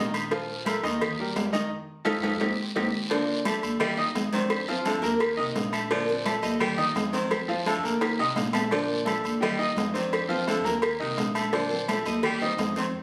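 Salsa, danceable and joyful, where a bright, up-front concert grand piano and a thumpy, gut-strung pizzicato upright bass open over high-tuned congas, a round low-tuned cowbell, a raspy guiro, ringing agogo bells and timbales and distant, woody claves, with a band accent and drum fill leading to 3.1 s, when a fingerpicked nylon-string guitar carries the melody with audible finger squeak and a gritty baritone saxophone with vibrato adds a second line, captured on a phone in the room with moderate studio reverb.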